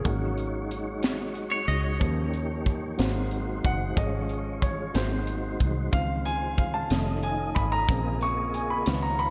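A lush hall reverb gives this short cut from a longer slow gospel piece a big arena sound, reverent and hopeful at 61 BPM in a straight 6/8. The grand piano carries the lead through all 9.3 seconds with a slapback echo, over a smooth tonewheel organ with key click, chorus vibrato and a slow rotary speaker, an up-front fingered electric bass with a foam-muted tone, and a polished fusion drum kit with a high-tuned snare, tight kick and hi-hat. A clean, compressed semi-hollow electric guitar adds a brief picked second line from 1.5 to 2.2 seconds in spring reverb, and a jingly tambourine sits in the background from 5.9 seconds as the chords move from Ab7sus4 through Dbmaj7 and F7alt to Bbm7.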